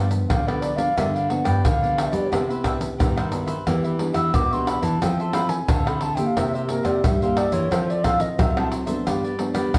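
Samba and choro in a festive, lively mood, this fragment of a longer piece features a reedy baroque flute that carries the melody from 0.3 to 8.7 seconds with a pure wooden tone, vibrato and tongued notes. Beneath it, a crisp picked cavaquinho and a full-bodied, deep classical fingerpicked nylon-string guitar supply the chords, moving from G7 through Cmaj7, Em7, Fmaj7, C7 and Fmaj7 again before returning to G7, while a second nylon-string guitar is thumb-plucked for a warm classical bass. Egg shaker, pandeiro, deep surdo and tamborim played with hard hands sit up front in a small-room sound, and wet studio reverb places the ensemble further back in the room.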